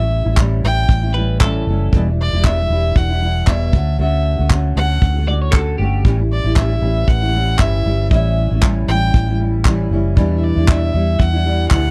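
A dry, close 1970s-style studio sound frames this heartfelt, easy-going acoustic pop excerpt in A mixolydian at 116 BPM with a light sixteenth-note swing, where a clear, biting violin sings the melody with vibrato over fingerpicked, double-tracked nylon-string guitar, a round, foam-muted vintage electric bass, and a dark soft brush kit with punchy kick and handclaps, while a bright, twangy twelve-string electric guitar adds a short second line at 1.1 and 5.3 seconds over chords moving from A7 through Em7 and Dmaj7.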